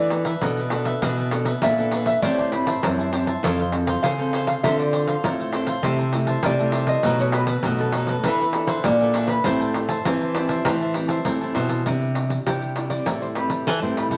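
The excerpt opens with both nylon-string guitars, the cavaquinho and the lap resonator guitar sounding together, with the pandeiro joining a moment later at 0.1 seconds, setting a festive, lively samba and choro feel at 100 BPM in 4/4, in A minor. The lap resonator guitar carries the melody with fingerpicks and slide, its tone metallic and nasal yet mellow. Beneath it, one nylon-string guitar plays fingerpicked classical-style accompaniment up front, with fresh strings and audible finger squeak. A second, smaller-sounding nylon-string guitar holds down the bass line. The crisp, bright cavaquinho picks its accompaniment until 11.9 seconds, while the jingly pandeiro, struck with hard hands and heard close, drives the groove. The harmony moves through minor seventh chords and a B7 before shifting to a new section at 11.9 seconds on Cadd9 and settling back on Am7, all set in a wet studio reverb.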